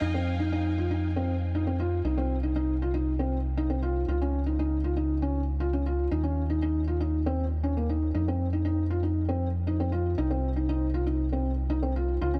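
A felt-muted upright piano and a round analog bass begin together at the outset of this short cut from a longer piano and strings electronica piece, which sits in its drop for the full 12.4 seconds. The piano repeats a riff in its middle register, its tone soft, mellow and dark, with thick felt and audible action noise close to the ear, and a digital delay trailing its notes. Beneath it, the bass holds deep, sustained tones with a fast attack, blending sawtooth, sine and triangle colours into one warm, up-front low end. The harmony cycles through F5, Cm, Dbadd9 and Eb5 before returning to F5 and Cm, which gives the steady 4/4 pulse an intimate, hypnotic pull. Light reverb and small room ambience frame both parts, keeping the sound close and private.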